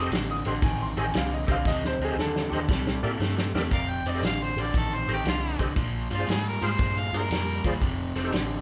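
An overdriven harmonica takes the spotlight in this laid-back, rollicking electric blues shuffle, entering at 3.7 seconds for an up-front, warm solo full of scooped notes, tongue slaps and light vibrato. Before that, a woody, slightly detuned upright piano opens the fragment with an intimate solo, its audible action noise and long sustain present until 3.2 seconds, while the drums play a fill from 1.7 seconds. A reedy, bright tonewheel organ with key click, chorus vibrato and a slow rotary speaker fills in the accompaniment, and a crunchy, picked overdriven guitar drives the riff. Underneath, a dark, round foam-muted electric bass sits with a punchy acoustic kit of kick, medium-tuned snare and ride cymbal. The band sounds as if playing live together in one room, with moderate studio reverb, moving through F7, C7 and Bb7 in this excerpt cut from a longer piece.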